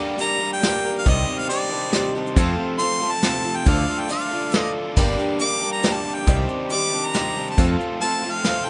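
A bright harmonica carries the melody up front with light vibrato and scooped notes in this wistful, dusty folk rock and heartland rock clip in G minor at 138 BPM in 3/4, set over a Gm, Cmadd9, F and Dm progression with a double-tracked overdriven electric guitar riff, a growly picked electric bass entering at 1.1 s, soft brush drums with a punchy kick, a grainy, very quiet tube shaker, a boxy swing-style acoustic guitar and a woody upright piano in the background, and a reedy, breathing pedal harmonium holding faint chords, all in a rough home demo mix with light reverb.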